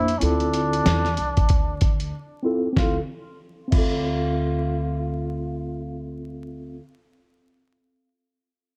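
Jazz-hop with a cool, smoky mood, moving at 94 BPM in 4/4 with a swung sixteenth-note feel in D minor, cut from a longer piece. A trombone in a straight mute carries the melody until 6.1 seconds, its nasal, vintage tone sung with vibrato, soft attacks and scooped notes, and softened further by a low-pass filter and tape echo. Beneath it, a mellow tine electric piano heard through its built-in speakers lays down accompaniment around a Dm9 chord, while a woody, growly pizzicato upright bass holds the low end up front. A gritty, compressed sampler-style soul drum kit with a thumpy kick, fat snare, hi-hat and crash drives the groove until 3.9 seconds, its sound re-recorded in a large room. A filter sweep runs through the opening section, a brief break arrives at 2.1 seconds, and the dark production is coated in vinyl crackle and light digital ambience.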